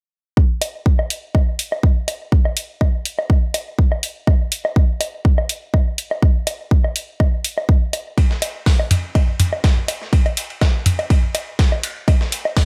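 A punchy, layered electronic kick drum sits up front in this quirky, hypnotic minimal techno piece, pulsing at 123 BPM in 4/4 with a light 54% swing on the 16ths. Electronic hi-hats join almost at once, also up front, while tape-touched analog woodblock and toms add percussive color through a digital delay. At 8.2 seconds a dusty, soul-style sampled drum kit of hi-hat, ride cymbal and medium-tuned snare enters further back. Its gritty, overdriven, compressed sound is thinned by high-pass filtering and shaped by gated reverb, with sidechain pumping on its cymbals and hats. The overall sound is dry and bright, with a 1980s digital sheen, and this section is cut from a longer piece, running to 12.7 seconds.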